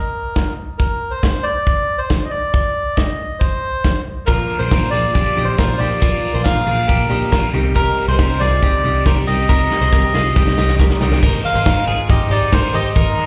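Jangly indie pop at 138 BPM with a youthful, nostalgic mood, heard as a live gig through a club PA and cut from a longer piece: a reedy, breathy melodica carries the melody up front with slapback echo and analog delay, joined almost at once by a tight, small-room drum kit of kick, snare, hi-hat and crash. At 4.3 seconds the band fills in, with a bright, twangy twelve-string electric guitar playing arpeggios through spring reverb, an overdriven guitar tucked in the background with phaser, and a round, dark picked bass, as the chords move from Bb to Cm. A drum fill at 9.5 seconds leads into a new section at 11.2 seconds on an Abadd9 chord.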